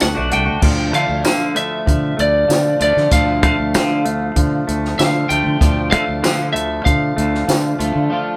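From the first instant a full indie rock band plays together live in one room at 96 BPM, upbeat and jangly, with a twangy, slightly broken-up lead guitar carrying the melody over a picked overdriven guitar riff and a clean, compressed twelve-string chiming in the background, while a growling, overdriven fingered bass and a dry, punchy compact cocktail kit with dark cymbals, high-tuned snare and tambourine sit up front, the harmony moving from D to D minor in a moderate studio reverb before a break at 8.1 seconds cuts this fragment of a longer piece short.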